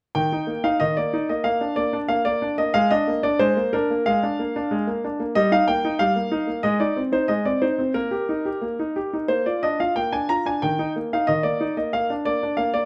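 Elegant and cheerful, this straight-feeling classical-period piano sonatina excerpt features a solo concert grand, smooth and vintage in tone with deep bass, played up front from 0.1 to 12.9 seconds across a range from Eb3 to Bb5, captured by close, detailed microphones with light reverb.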